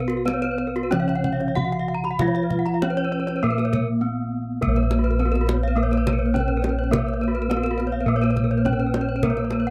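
Up front and loudest, the bossed gongs carry the bass with a round, dark, smooth bronze tone whose beating gives each stroke a pulsing quality. This is a shimmering, hypnotic passage of Balinese gamelan cut from a longer piece, moving at 102 BPM in 4/4 with uneven beats, in a Bb pelog scale tuned to A4 = 439 Hz. Above the gongs, a wooden-mallet bronze metallophone states the melody with an airy, ringing tone, and its paired tuning produces shimmering beats. Another wooden-mallet metallophone plays the accompaniment in a lower register. Two horn-mallet metallophones spin bright arpeggios high up: one is very quiet, and the other is close-miked, dry and full. The kendang adds tight, hard-handed acoustic drumming, heard in a small room. The recording has a dry, close 1970s-style studio sound, and the music moves into a new section at 4.6 seconds.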